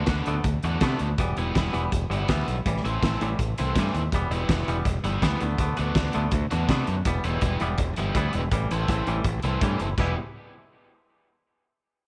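Restless and bittersweet, this fast indie rock cut in E minor at 164 BPM pairs a bright, overdriven garage guitar riff, colored by lush chorus and tape echo, with a clean, twangy picked guitar riff over a growling, up-front fingered bass and a loose drum kit with a punchy kick, a fat snare and dark cymbals in a pumping room, all cycling through Bm7/D, Em and Am7 before the parts stop near 10.1 seconds.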